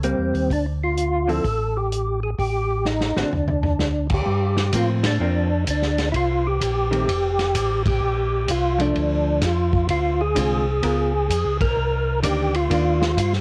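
Soul jazz organ trio in a smoky, bluesy mood, swinging at 128 BPM in D minor before shifting to G minor at 4.3 s, in this short cut from a longer piece. A fat, lightly overdriven tonewheel organ carries the melody with percussive third-harmonic attack, key click, chorus vibrato and a slow rotary speaker, over a round, dark organ bass line through its own slow rotary, and a clean, compressed hollow-body electric guitar comping in a dark, picked tone. A distant, roomy acoustic drum kit with a tight kick and rolled-off top plays a fill from 2.9 to 3.8 s, and the band hits accents at 5.0, 7.8 and 11.5 s, all captured as a small-room home recording with cassette tape coloring the lead organ, guitar and drums.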